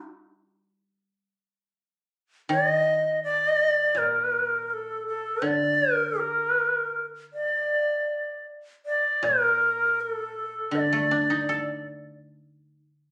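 Austere and calm, this fragment of Japanese traditional chamber music moves in a free rubato feel around 82 BPM in 4/4, in D miyako bushi. A dry, woody koto played with fingerpicks accompanies throughout, opening alone until an airy, reedy shakuhachi enters up front at 2.5 s with a straight tone and soft attack, carrying the melody until 11.9 s. The phone recording in the room adds a light club reverb.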